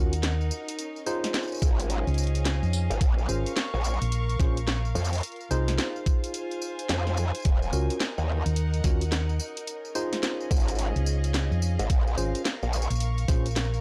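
A growling, wobbling growl bass, shaped by a formant filter, chorus and tube saturation, sits up front in this gritty, playful glitch hop excerpt at 108 BPM in 4/4. It enters at 1.6 s alongside a knocking electronic kick drum. A dark, round hollow-body short-scale fingered electric bass, also up front, plays from the start. A layered drum kit adds a cracking snare, bright hi-hats and tambourine, swung on the sixteenths. A barky, worn tine electric piano through a combo amp plays slightly out-of-tune stabs, roughened by 12-bit sampler grit, tape echo and sidechain pumping, while a soft-attack chamber string section, bowed sul tasto with light vibrato, forms an intimate, pumping texture as the harmony moves through Ebm7, Dbmaj7 and Fm7 in a dry, cassette-tape hardware sound.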